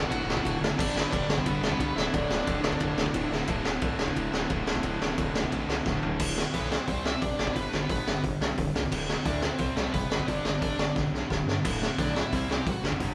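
A raw sound, as if the band is playing live in one room with light reverb, carries this energetic, rowdy punk rock excerpt, driven by an up-front, saturated garage drum kit with a high-tuned snare, punchy kick and rolled-off top that throws in fills at 3.3 and 11.0 seconds. Beneath it, a gritty, nasal synth bass with oscillator sync and a moving notch holds the low end, while three picked guitars churn out the riff. A bright distorted guitar and a dark, double-tracked overdriven guitar sit very quiet, and a hollow-body semi-hollow guitar stays in the background and drops out through the middle stretch. Over the top, a smooth overdriven lead guitar carries the melody, pausing after its opening phrase and returning at 6.5 seconds.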